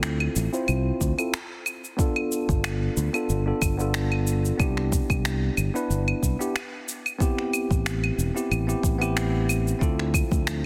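A lightly swung 4/4 groove of tape-warm electronic finger snaps, cabasa and claves, with soft clipping on the snare, is joined at 1.0 seconds by a deep, layered electronic kick in this smooth, wistful sunset chillout excerpt, where a punchy, up-front fingered electric bass sits under a bell-like, clean tine electric piano sweeping through a low-pass filter with tape echo over Dm7, G7, Cmaj9 and Am7, before soft-handed congas and an airy, breathy, detuned pad slip in very quietly at 10.2 and 10.3 seconds.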